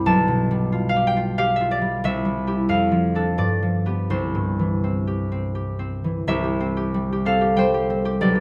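Classical solo harp music in C major, this short fragment cut from a longer piece carries a wistful, mysterious mood at a gently flexible 80-95 BPM in 3/4, its rubato letting the phrases breathe. A single concert harp plays throughout, fingerpicked and placed up front, its warm, ringing acoustic tone spanning from B1 up to B5. The harmony opens on G7/B and settles onto C at 2.0 seconds, passing through Dm/F and G7 before resolving back to C at 4.1 seconds. After the opening section, a new section begins at 6.3 seconds and carries the music to its cut at 8.4 seconds. A moderate recital hall reverb surrounds the instrument, giving each plucked note a natural sense of space.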